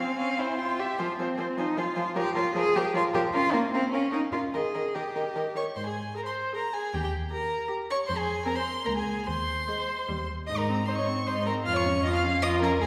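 A quick, stormy classical-period movement for string quartet in 3/4 at 152 BPM, played with rubato, opening in F minor before turning toward Ab major around 3.3 s, with urgent energy that carries through a second section beginning at 5.8 s. The first violin carries the melody high in its range with a focused, vibrato-rich tone and a smooth top, while the second violin adds an expressive, somewhat distant inner line with portamento, and the viola fills in the accompaniment with a rich, focused sound. The cello sits close and up front, its full, bowed bass anchoring the group in a church or concert hall acoustic with generous reverb, in this fragment cut from a longer piece.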